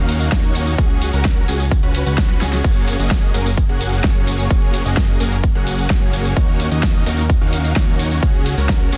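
A punchy, overdriven electronic kick sits up front from 0.3 seconds, anchoring this euphoric, triumphant stretch of festival progressive house at 129 BPM in a straight 4/4, cut from a longer piece in F# major. Above it, a huge, detuned supersaw riff blends sawtooth and triangle layers with a sub octave and a breath of noise, its sustained tone carrying vibrato, sidechain pumping and a digital delay. A fat analog bass with tube saturation and a filter sweep pumps underneath from the start, while a layered big-room drum kit brings a huge snare, crash and ride cymbals, hi-hat and tambourine, with a short fill between 2.3 and 2.6 seconds. The harmony moves from D#m7 through C#sus4 to a long F#add9 before returning to D#m7 and C#sus4. The master is dense and heavily limited, with only the drums carrying a touch of studio reverb.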